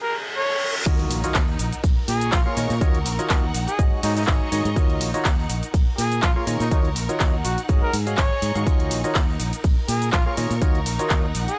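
A breathy, whispered trumpet with a soft attack and light vibrato carries the melody through this soulful, bittersweet piano house excerpt in Eb minor at 123 BPM, trailed by tape echo. After a short break of electronic riser and reverse cymbal, an impact lands at 0.9 s as the drop arrives: a punchy, up-front electronic kick anchors a tape-warm analog drum machine with claps, hi-hat, shaker and crash, while a very quiet brushed jazz kit adds dark cymbals and snare underneath. Hollow, mellow organ stabs with lush chorus and cassette grit pump alongside a low-pass-filtered fingered electric bass and a rich, bowed string section over a swung Ebm9, Bbm7 and Ab7sus4 progression, in a dry, gritty hardware sound.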